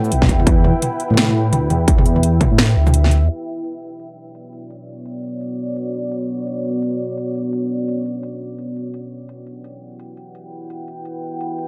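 Filtered through a low-pass sweep and light digital ambience, this tense, dark half-time drum and bass excerpt opens on a drop where a rumbling, detuned saw bass with tube saturation and a distorted electronic kick sit up front, the kick falling away at 2.9 seconds and the bass at 3.3 seconds, while a tape-warm drum kit with a cracking snare, metallic hats, shaker, crash and toms and a deep, moody pad with chorus, reverb and sidechain pumping carry on through sustained Emadd9 and Bm chords.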